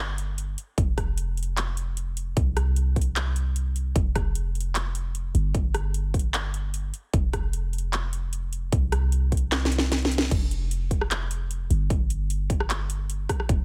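Future bass excerpt at 151 BPM in a half-time 4/4 feel, bright and lush, where a deep, boomy 808-style bass with a sine tone and a noise layer pumps under sidechain from the start, a sharp-snared trap kit with metallic hats, claps, rim clicks and crash joins at 0.2 seconds, and a punchy, layered, overdriven kick lands at 0.8 seconds, all up front and dry, with the drums re-recorded in a small room, through a drop that resets after a drum fill at 9.5 seconds.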